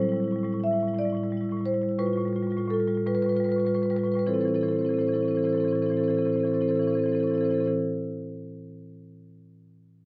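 A solo marimba played with medium mallets opens this reflective, flowing passage from a contemporary classical piece in A minor, tuned to A4 = 444 Hz. It moves in a rubato 6/8 at roughly 48-60 BPM in dotted quarters and slows over the first 4.3 seconds as the harmony shifts from Am7 to G9/A, then settles on A minor. The woody, vintage tone of the rosewood bars sits up front on close, detailed microphones, spanning A2 to E5 with a somewhat band-limited character, and a moderate recital-hall reverb surrounds it until the marimba stops at 7.7 seconds in this excerpt cut from a longer work.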